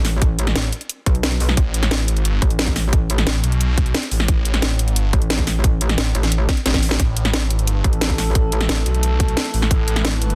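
A straight, driving drum and bass beat opens this dark, futuristic technical excerpt, with a tight, overdriven electronic kick and a layered kit of cracking snare and bright hats sitting up front, broken by a drum fill at 6.5 seconds. Underneath, a swirling, thick detuned saw bass with phaser, tube saturation and sidechain pumping churns alongside an aggressive, metallic wobble bass carrying chorus. At 7.5 seconds an eerie, inharmonic drone with slow attack, chorus and its own reverb rises in, all within a dense, heavily limited modern master that stays dry overall.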